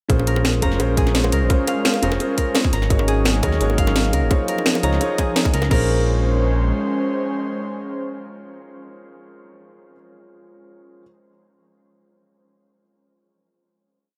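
Melancholic and dreamy, this short liquid drum and bass piece at 171 BPM in Bb minor opens straight into a drop where an overdriven electronic kick and a kit of cracking snare, bright hats and crash roll up front beside tight, high-tuned bongos and a smooth, gliding, detuned synth bass, while a warm grand piano with dub echo holds close-voiced chords with syncopated pushes, an airy, breathy pad pumps under chorus, and a ringing, fingerpicked Celtic harp loops a 12-step arpeggio that drifts against the bar, before the drums drop out at 5.8 seconds and the piano, pad and harp carry a final Bbm9 chord in a small room.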